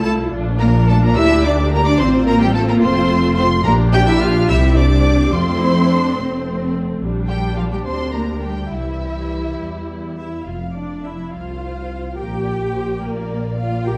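This quick classical-period movement for string orchestra moves in a spirited, lively 6/8 at 71 BPM counted in dotted quarters, in F major, and is cut from a longer piece. The first violins carry the melody with a soft attack and expressive vibrato, their lush tone sitting at a distance. A second violin section plays a smooth, even line close to the listener, while the violas fill in the accompaniment with portamento and a full-bodied sound. Beneath them, the cellos give the bass a dark, woody colour, and an up-front double bass section anchors the low end with rich, steady bowing. The harmony moves through Bb, F/A, Gm7/Bb and C, and the opening section gives way at 10.5 seconds to a second section built on F5 and Gm/Bb. A moderate scoring stage reverb wraps the ensemble in a mellow, dusky production.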